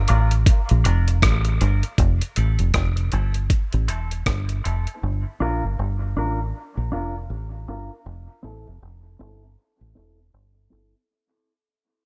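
A deep, round fingered electric bass sits up front in this heavy dub reggae excerpt, its dark, foam-muted tone played direct and amped at 79 BPM in 4/4 with a swung sixteenth-note feel. A dusty sampler-style drum kit is equally forward, with gritty, compressed hi-hat and rim clicks over a thumpy kick. A clean, fingered electric guitar plays mellow accompaniment through high-pass and low-pass filtering and a dub echo, while a very quiet tonewheel organ adds a soft, lightly overdriven layer through a slow rotary speaker with chorus vibrato. The harmony moves between Gm7 and Fmaj7, and the dry mix carries a filter sweep and a fade-out across its length. At 5.0 seconds the drums drop out and the organ has already stopped, leaving bass and guitar to carry the break until the end at 10.9 seconds.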